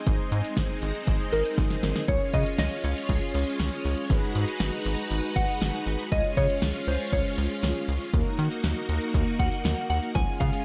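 A straight 4/4 groove at 119 BPM drives this bright, wistful synth-pop fragment in Db major, set by a deep house drum kit with a deep kick, fat snare and hi-hat that sits up front with a tape-warm, layered character. Beneath it, a rubbery square-wave bass bounces with a hollow, nasal tone and a filter pluck with a fast attack, also placed close to the listener. A shimmering vintage string machine holds sustained violin chords through an ensemble chorus, while a round, brassy synth brass part adds darker, detuned accompaniment with chorus and vibrato. A soft FM bell carries the melody from 1.3 s, its pure, gentle tone decaying into a long release through chorus, phaser and delay, just before a drum fill ushers in the move from Ab to Db. The harmony then passes through Abm7, Db and Ebm, and a very quiet, lush unison pluck flickers briefly at 10.2 s, all set in light reverb and digital ambience.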